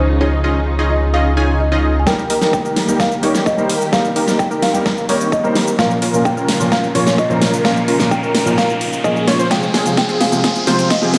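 A woody marimba melody, dark piano accompaniment, a very quiet bowed string section, a full-bodied supersaw stab riff and a thick, chorused detuned saw bass that stops at 2.0 seconds all open this emotional, euphoric festival progressive house excerpt together; a build-up then begins with a nasal, warbling unison lead playing arpeggios, an up-front big-room drum kit with a huge snare and metallic hats, a punchy layered kick in the background, a drum fill and filter sweeps, and a riser arrives at 5.4 seconds, the whole heard through a huge ambient reverb, with delay on the marimba, piano, stab and lead and sidechain pumping on the piano, stab, bass and lead.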